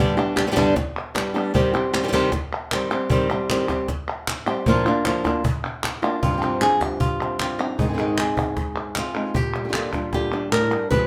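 Flamenco at 154 BPM in 4/4, fiery and mournful, this excerpt puts a bright, fresh-stringed fingerpicked flamenco guitar up front carrying the melody over crisp palmas hand claps and a snappy cajon with snares in a live room, with a second, warm fingerpicked guitar adding stabs from 6.2 seconds as the chords move from G through Cm, Eb6 and Bb to G7sus4, Ab and Bb6, all set in a wet studio reverb.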